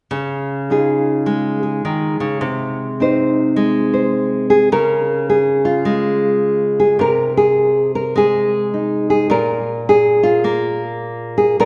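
Peaceful and nostalgic, this short folk passage, cut from a longer piece, features a single nylon-string guitar played fingerstyle from 0.1 to 11.7 seconds. The guitar sits up front with a deep, classical tone, its fresh strings and thumb-plucked attack giving each note a clear, rounded presence. The eighth notes carry a gentle swing in an unhurried 4/4, moving through a Dbadd9 to Ab/C progression that repeats before settling onto a Bb5 at 9.3 seconds. The melody ranges from Bb2 up to C5, with a second phrase beginning at 4.7 seconds. A lush, wet reverb with the long decay of a church or concert hall surrounds the instrument and lends the whole recording an intimate yet spacious glow.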